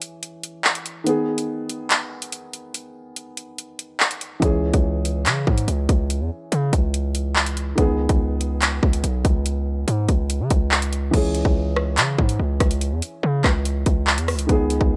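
In a digital ambience, this ominous, dark half-time drill fragment pairs a mellow, boxy grand piano, its action noise audible, with an up-front electronic kit of hard-clipped kick, metallic hats, handclaps, rim clicks and crash, and a heavy, aggressive distorted 808 bass with a noisy, fast-attack edge joins them at 4.4 seconds.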